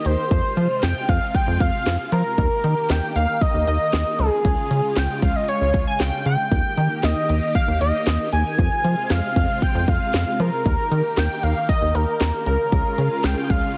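A bold, retro octave-doubled lead carries the melody from the start, its detuned sawtooth and triangle tones colored by chorus and a touch of vibrato, sitting up front between Ab4 and Ab5. This is bright, nostalgic synth-pop in Eb mixolydian, moving at 116 BPM in a straight 4/4, and the clip is cut from a longer piece. Beneath the lead, a rubbery square bass joins at 0.1 seconds with a hollow, bouncy, wave-folded pluck, dark and resonant, ranging from Db2 to F3. A punchy, layered house drum kit drives the groove with a cracking snare, metallic hats and kick, while a swirling vintage string machine, softer in the mix, holds sustained sawtooth chords through ensemble chorus and phaser. The harmony cycles through Fm, Eb and Db, and the whole track sits in a moderate plate reverb with a heavily compressed, radio-ready sound.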